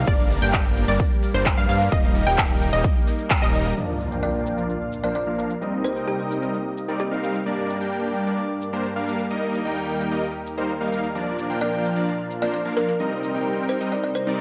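Uplifting and anthemic, this festival progressive house excerpt in Bb major at 130 BPM opens on a drop where a punchy overdriven kick, a fat wave-folded analog bass and a detuned unison pluck with delay pump under huge supersaw chords, a chorused pad and crisp overdriven hats, claps and cabasa. After a band accent at 3.3 seconds the kick and bass drop out, and following an electronic impact at 3.8 seconds a filter sweep moves over the supersaws and a woody, ringing kalimba melody with delay enters, all in light reverb over a Gm, Eb, Bb, Cm7 progression.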